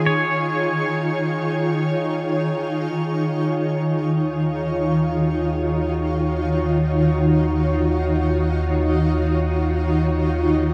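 Floating in free time, this melancholic yet serene ambient passage in Eb minor is cut from a longer piece. A cloudy, evolving granular pad sits up front and carries sustained chords throughout, with a slow attack, long release and its own built-in reverb, while a filter sweep moves across it in the opening moments. An electric pedal steel guitar, clean and compressed with fingerpicked slide notes and volume swells, sings a brief melody through a diffuse ambient delay until 2.0 s, and a very quiet, smooth bowed violin section adds a close, rich vibrato texture high above until 3.0 s. At 3.0 s the harmony settles from a rootless Bbm7/Eb onto Ebm7, and a round, dark analog bass enters underneath with a deep, sustained tone. A wet shimmer reverb with a long tail bathes the whole passage in a shimmering haze.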